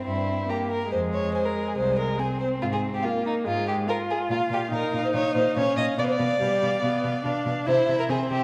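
A rich second violin in the background and a focused, up-front viola open this spirited, cheerful excerpt from a quick classical-period string quartet movement, with the cello's bass line entering at 0.1 seconds and the lead violin's smooth-topped, up-front melody at 0.5 seconds, all four parts bowed with vibrato by single players in a wet scoring-stage reverb.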